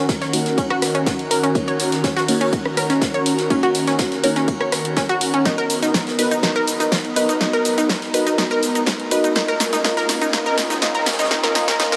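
A straight 4/4 progressive house build-up, bittersweet and driving, rides a punchy layered electronic kick and an up-front house kit of hi-hat, rim click, shaker and snare, with a soft brush kit of hats, ride and fat snare tucked in the background, while a lush detuned unison pluck arpeggiates up front with sidechain pumping and tape echo, a deep, warbling vintage chord stab carries its own tape echo and a filter sweep, an airy breathy pad holds pumping chords through chorus and phaser, a round analog bass sits barely audible beneath, a drum fill begins at 5.5 seconds, a very quiet riser enters at 6.6 seconds, and a huge ambient reverb bathes the mix.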